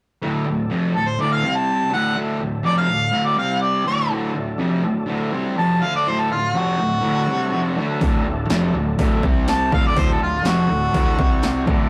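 Rough and saturated like a rehearsal-room take, with a moderate studio reverb, this gritty, swaggering excerpt of blues rock and southern rock struts along at 123 BPM in a straight 4/4, centred on D mixolydian and moving between D and C5 chords. A double-tracked, compressed fuzz guitar drives the riff up front from the start, bright and picked, while an overdriven tonewheel organ sits very quiet beneath it, holding thick sustained chords through a slow rotary speaker and chorus vibrato. At 1.0 seconds a harmonica takes the melody, warm-toned yet distant and roomy, with light vibrato, scooped notes and a jazz-style overdriven edge that keeps it out front as the solo voice. At 8.0 seconds the band thickens as a punchy analog drum machine arrives with overdriven kick, snare and hi-hat, joined by a fingered electric bass whose growly fuzz stays in the background. The passage reads as a raw, swaggering slice cut from a longer piece.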